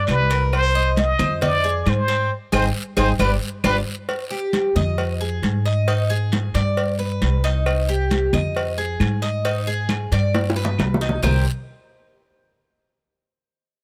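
This is a Cuban son and guajira excerpt with a nostalgic, warm mood and a straight, steady four-beat pulse. A plunger-muted trumpet opens with a brilliant, wah-wah jazz solo full of vibrato and scooped notes, sitting up front before it drops out at 3.8 seconds. The Cuban tres carries picked arpeggios throughout, its doubled strings bright and metallic with some octave doubling. Underneath, a dark, thumpy upright bass with gut strings plays pizzicato and woody, while thick-skinned, vintage-sounding congas, round low-tuned cowbell and bongos played with soft hands, and a raspy, dry guiro keep the groove going. Claves tap in the background of a live room, pausing after the opening phrase and returning at 7.7 seconds, and the band hits a shared accent and a drum fill just before the second section. The sound is close and detailed, with little reverb.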